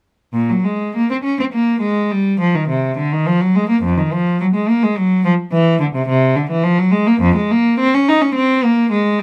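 A classical, baroque-style suite movement for unaccompanied cello, grave and introspective in mood, moving in a flexible, rubato triple metre. A single bowed cello plays alone from 0.3 to 9.2 seconds, ranging from F2 up to Eb4. Its gut-string sound is rich and reedy, shaped in a period style and placed up front in the mix. Light reverb gives the solo line a sense of space around it. Cut from a longer piece, this short passage presents one unbroken section of the movement.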